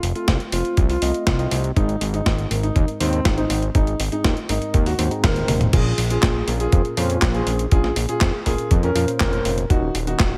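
A fat, detuned sawtooth bass with a filter sweep opens up front alongside a tape-warm 12-bit drum machine of handclaps, hi-hat, snare, toms and crash washed in gated reverb, soon joined by a thumpy, gritty electronic kick, a boxy grand piano melody carrying sampler grit and delay, and mellow tine electric piano stabs in the background, giving this danceable, bittersweet italo disco cut a band accent at 5.2 seconds and a drum fill just before the move from F and Ab to Bbm7 at 5.7 seconds, all over light digital ambience and a faint mains hum.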